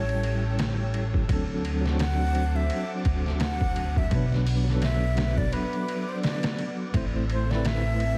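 A breathy, close-miked flute with tape echo opens this smoky, cinematic trip hop excerpt over bright, clean tine electric piano with tremolo, a woody pizzicato upright bass with tube saturation sitting up front, and vintage sawtooth string-machine cellos with ensemble chorus in the background, as a muffled, overdriven, pitched-down sampler-style drum kit with a thumpy kick joins at 0.1 seconds, the whole sound wrapped in compressed radio tone and vinyl crackle, with a break at 5.5 seconds before a new section at 6.9 seconds.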